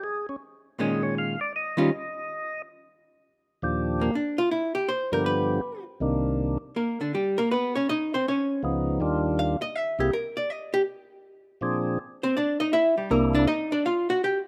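A rough home-demo mix with light reverb gives this soulful, bluesy jazz fragment, cut from a longer piece, a close, informal feel. It swings in 4/4 at 161 BPM, and a percussive tonewheel organ opens with a short solo, its full, clean tone marked by key click and second-harmonic percussion, turning through a slow rotary speaker and plate reverb. An archtop guitar, miked and amplified, enters at 0.8 s as accompaniment, its picked, hollow-body electric sound dark and up front, also touched by plate reverb. From 3.0 s the music settles into Eb major and the guitar takes over the solo spotlight, while the organ carries the melody until 13.5 s. The harmony is rich with extended chords such as Ebmaj9, Cm9 and Db9, with a brief break in the chords before the progression moves on toward a closing Dm.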